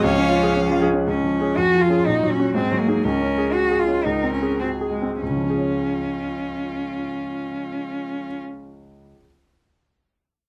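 Captured with close, detailed microphones and light reverb, this brief cut from a quick, dramatic and restless classical-period piano quintet movement in Db major and 2/4 at 97-124 BPM sets a rich, bowed violin melody with vibrato over an intense, up-front cello line, while a clear, distant second violin and a focused viola sound only until 0.8 s, and a vintage, short-sustained grand piano carries the accompaniment through to 9.3 s, the tempo slowing midway before settling back on the home chord.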